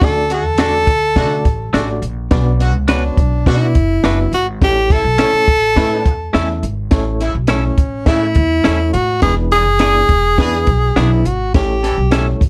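This uptempo 1960s-style soul clip opens with a breathy tenor saxophone carrying the melody over a barky reed electric piano, a woody upright bass and a compact cocktail drum kit, all heard from the first moment. The saxophone sits up front, with soft attacks, scooped notes and vibrato in a jazz style. The electric piano fills in the accompaniment, lightly overdriven through its built-in speakers, with a fast tremolo and tube saturation. The pizzicato bass on gut strings is thumpy and close, while the small-room kit pairs a punchy kick and a high-tuned snare with a smooth, rolled-off top. A distant, roomy horn section joins at 0.3 seconds with a clear second line, and a bright, compressed electric guitar adds picked stabs from 0.6 seconds as the chords move from D through Bm and A to E7 before returning to A, all in a dark, lightly reverberant production with an uplifting, danceable mood.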